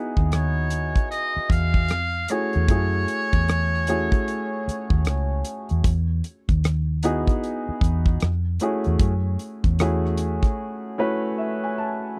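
This dry, close recording has the intimate feel of a 1970s studio, with little reverb and a relaxed, soulful mood in an R&B and neo-soul vein, cut from a longer piece. A baby grand piano with long sustain carries the accompaniment throughout, moving through lush ninth and major-seventh chords over a swung sixteenth-note feel. A damped drum kit with a tight kick, rim clicks, hi-hat and a rolled-off top sits up front beside a dark, foam-muted fingered electric bass whose round, punchy tone holds to a low register. A trumpet with a metal mute takes the solo melody in a jazz style, its buzzy, thin tone touched with light vibrato and set back in a roomy space, and it stops at 5.5 seconds. The bass drops out at 10.4 seconds and the drums at 10.6, and the piano closes the passage alone with a short fill.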